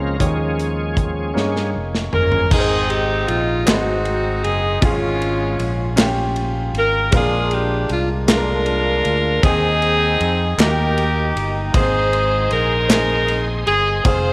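A slow, straight 6/8 pulse at 52 beats per minute, counted in dotted quarters, carries this soulful, hopeful gospel piece in Ab major, cut from a longer work. It opens on a bright, shouting tonewheel organ, lightly overdriven with key click, chorus vibrato and a slow rotary speaker, while the drum kit plays a fill beneath it. A smooth saxophone section takes the melody from 2.1 seconds, up front with light vibrato, a soft attack and a slapback echo. Under it, a clear concert grand piano with deep, open lows, a fingered electric bass played direct and amped, and a punchy acoustic studio kit with a rolled-off top fill out the accompaniment. Very quiet, crisp handclaps join at 3.7 seconds, and the organ returns with sustained chords at 11.7 seconds as the harmony moves through Ab7, Bb7 and Eb to settle back on Ab. A moderate echo-chamber reverb gives the whole band a roomy glow.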